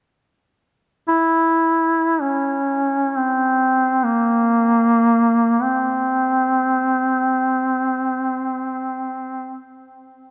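Caucasian folk lament in free time, solemn and longing, with a warm solo duduk up front from 1.1 to 9.7 seconds, its smooth-topped tone shaped by vibrato and scooped notes in a narrow range from B-flat 3 to E4, all set in a moderate church reverb that lingers for 3.8 seconds in this fragment of a longer piece.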